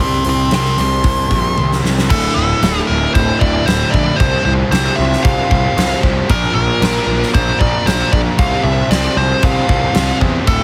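A nasal lead guitar, overdriven and set through a parked wah, takes a solo at the start of this angsty, brooding quiet-loud alternative rock excerpt at 115 BPM. It plays over growly fuzz bass, a bright picked guitar riff in the background and a faint hollow-body guitar, while a big rock drum kit with a fat snare and punchy kick enters at 0.2 seconds and closes the opening with a fill. From 2.1 seconds a dark, double-tracked guitar riff and a very quiet chamber string section bowing soft sul tasto chords with vibrato join over Dsus2, Csus4 and Bb, all set in light reverb with a heavily compressed, radio-like sound.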